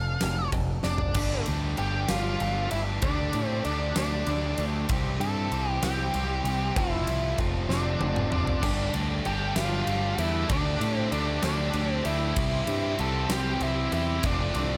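A dark, fuzzy octave lead guitar carries the melody over growling, up-front overdriven bass, a bright picked rhythm guitar, a tight distorted guitar and a veiled, very quiet muted string section sustaining lush chords. This restless, anthemic alternative rock excerpt moves at 64 BPM in 6/8 through Gsus2, Dsus4, C and F6. A huge arena drum kit with a fat snare, punchy kick and bright cymbals enters at 0.2 seconds; a double-tracked, sludgy overdriven guitar joins at 1.1 seconds as the tight guitar drops out, returning at 8.6 seconds after a drum fill, all under light reverb.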